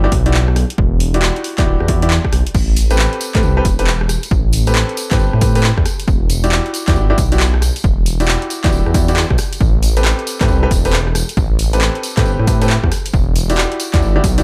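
This moody, late-night two-step garage cut moves at 136 BPM in 4/4, its 16ths swung at 64% for a skipping, off-kilter gait. An overdriven electronic kick and a punchy analog drum machine carrying crash cymbal, handclaps, hi-hat and rim click share the same gritty edge and the spacious feel of a large room. A deep, rumbling detuned saw bass sits up front, its beating unison tone dark and saturated. Clear baby grand piano stabs with short sustain trail tape echo over an alternation between Em9 and Am9 in A dorian. A jingly acoustic tambourine joins at 2.5 seconds, and a digital ambience envelops the mix in this excerpt from a longer piece.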